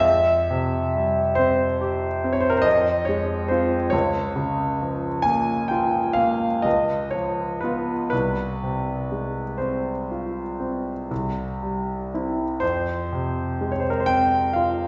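A lone concert grand piano opens this romantic nocturne on a C over F chord, its tone clear and intimate and set up front in a wet recital-hall reverb. The mood is yearning and wistful, with the phrasing pulled freely in rubato over a slow 9/8. The piano spans from a deep C2 bass up to Ab5, and its long sustain lets each harmony bloom in the room, while an audible action noise keeps the instrument close and present. The harmony drifts from F minor through B-flat minor over D-flat and a Db7, then settles onto F minor over C near 8.1 seconds before a C chord leans back toward F minor at 12.6 seconds. The polished sound has a soft, rounded top end, and this short passage is cut from a longer piece.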